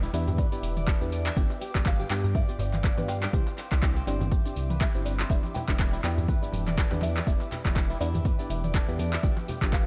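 This afro house excerpt opens with an ethereal pad holding sustained chords in the background, a fingerpicked kora spinning ringing arpeggios, soft chord stabs with a grainy 12-bit sampler grit, and a rumbling, detuned saw bass, all pumping to the sidechain over an overdriven afro-pop drum kit of handclaps, metallic hats, shaker and toms. At 0.1 seconds a buzzing marimba with soft mallets adds a woody, round melody and a crisp metal-shelled darbuka sits very quietly close by, and a punchy, up-front electronic kick arrives at 0.4 seconds. At 122 BPM in 4/4 with a light sixteenth-note swing, the groove feels driving and spiritual, moving through Em7, G7 and Cadd9 in E minor. Dub echo trails the kora, the phased and chorused stabs, and the marimba, and the pad carries its own airy reverb. Medium-tuned congas join at 5.4 seconds in the background, and the whole mix stays dark and dry.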